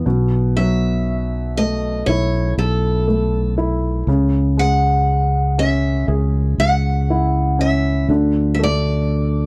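Nostalgic and tender, this short cut from a longer acoustic folk-pop ballad moves at an unhurried, straight four-beat pace. A felt-muted upright piano opens at the very start with soft, mellow accompaniment, its thin felt giving an intimate, muted tone. A fingered electric bass joins almost at once, round and punchy, sitting close and amped in the low register. At 0.6 seconds a picked steel-string acoustic guitar enters with the melody, its fresh strings ringing warm and clear above the others. The harmony passes from B7sus4 to C#madd11 and then settles on D5 near the end. The sound is dry and close, in the manner of a 1970s studio, with every part placed up front.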